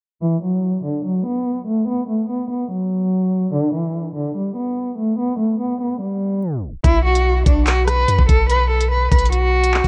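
A half-time drill groove in 4/4 takes hold at 6.8 seconds, when the electronic drum kit arrives up front with a knocking kick, crisp hi-hats, handclaps and rim clicks, joined by a long, deep, sine-toned 808-style bass with a fast attack and mellow decay. Before that, a single bowed cello carries the melody alone, its tone rich and even with a smooth vibrato, heard close and filtered to soften its top. The whole opening runs through a filter sweep and the sound of worn, warbling cassette tape with pitch drift, before a tape stop at 6.4 seconds pulls everything to a halt. When the beat drops, the cello continues its line over a B5 chord while the bass and drums push the mood into cold, dark hip hop territory. A light reverb surrounds this short section, which is cut from a longer piece.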